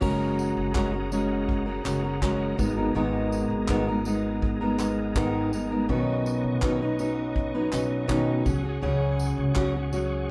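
A full-bodied, up-front fingerpicked steel-string acoustic guitar provides the accompaniment in this sunny, easy-going acoustic pop excerpt in F# major at 82 BPM, joined throughout by a woody, thumpy upright bass, a soft brush kit with tight kick, handclaps, tambourine and crash cymbal, and a reedy tonewheel organ holding sustained chords through chorus vibrato and a fast rotary speaker, as the chords move from F#add9 through G#madd9 and Badd9 to C#sus4 in a wet room heard from further back.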